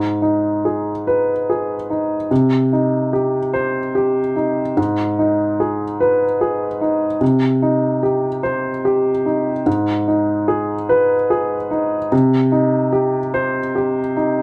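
Neoclassical minimalist piano in a slow, rubato 6/8 at 49 BPM, wistful and intimate in mood, tuned a touch sharp of standard pitch. A solo upright piano, woody and up front with its action noise plainly audible, sways between G#m and Cm chords across the 14.4 seconds, ranging from G#2 to C5. Light reverb lends a little air, a faint mains hum sits beneath, and the passage is cut from a longer piece.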